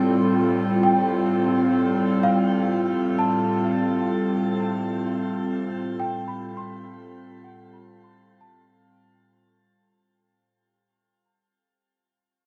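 Bathed in a wet shimmer reverb with a long 7.8-second tail, this reflective, spacious ambient fragment, fading out from the start, pairs a warbly, detuned, nostalgic tape-like pad holding a dark, up-front Fadd9/A chord with chorus against a worn, slightly out-of-tune celesta whose delicate, bell-like arpeggios drift through tape echo until 10.3 seconds.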